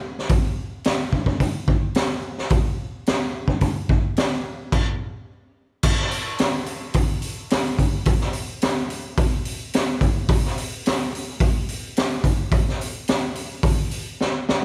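A raw garage drum kit kicks in at 0.2 seconds, setting up a gritty, raunchy rock groove at 108 BPM in a straight 4/4. The kit is acoustic and sits up front in a small room with light reverb, its sound mid-forward and saturated, with a rolled-off top end. A boomy kick anchors the beat beneath a high-tuned snare, while hi-hat and crash cymbal fill out the pattern. The drums break off at 4.7 seconds for a short stop before the next section picks up, and this fragment of a longer piece closes on a drum fill at 14.2 seconds.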